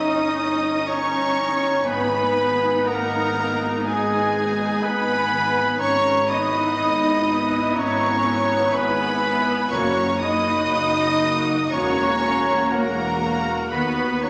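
Rubato in four, this slow, lyrical romantic orchestral passage, cut from a longer piece, sets a smooth violin section with light vibrato on the melody above a very quiet second violin line, a pure, straight-toned flute and a clear, vintage clarinet, while lush violas supply accompaniment, distant dark horns hold sustained chords, a faint ringing harp plays arpeggios, a background trumpet section adds smooth-topped stabs, and a punchy tuba, rich double basses and cellos carry the bass, with close, dry timpani sounding from 9.7 to 11.2 s in a wet scoring-stage reverb.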